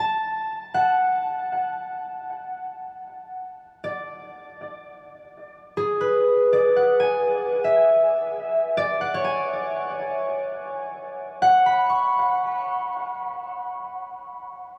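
Reflective, serene ambient music in which a solo concert harp, bright, ringing, fingerpicked and up front, moves from F#m to G#m7b5 between G#4 and C#6 through an analog delay, all held in a dreamy, reverb-soaked space with a huge 8.6-second tail for this brief 14.8-second excerpt of a longer piece.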